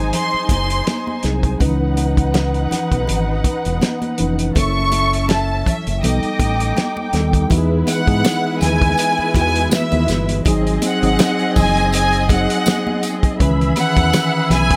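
A lush violin section carries the melody from the outset, close and up front with smooth, even vibrato, over a veiled, con sordino string line, a mellow tine electric piano and a round, dark fingered bass, with a fat-snared, tight-kicked drum kit and ringing, high-tuned congas joining at 0.1 seconds. This romantic 1970s-style soul excerpt in E major moves at an unhurried 81 BPM with a gentle swing, its chords drifting through rich sevenths and ninths under light reverb. At 7.5 seconds the music opens onto a new section on Emaj7, and a jingly tambourine enters in the background.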